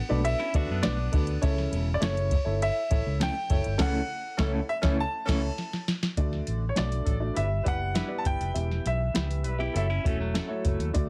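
Danceable and uplifting, this short 1960s-style soul cut at 101 BPM in A mixolydian sets a bright, brilliant concert grand piano melody over a woody, slightly detuned upright piano, dark tremolo-laced electric guitar stabs, a round, foam-muted fingered bass and an overdriven analog rhythm box with a deep kick, crisp snare and metallic hats, the bass and drums sitting up front. A twangy, picked clean guitar riff appears at 0.4 seconds and returns at 9.6 seconds, while a mellow jazz-style horn section with vibrato enters on a band accent at 3.8 seconds, and a drum fill leads into a new passage at 6.2 seconds moving through D, G6, Em and F#m7. Plate reverb touches the pianos, stab guitar and horns, and the whole mix carries a heavily compressed radio sound with light reverb.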